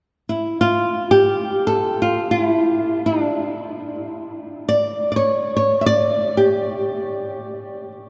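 Turkish music in free time, this short excerpt sits in makam nikriz on G and carries a hypnotic, soulful mood. A lone flamenco guitar carries the melody from 0.3 seconds to 7.9 seconds, fingerpicked and moving between D4 and E5. Its acoustic tone is dark and placed up front in the mix. The guitar rings out into a vast, echoing space, bathed in a drenched cathedral reverb with a long 5.8-second tail. Cut from a longer piece, the passage holds a single unbroken section of unmeasured melody.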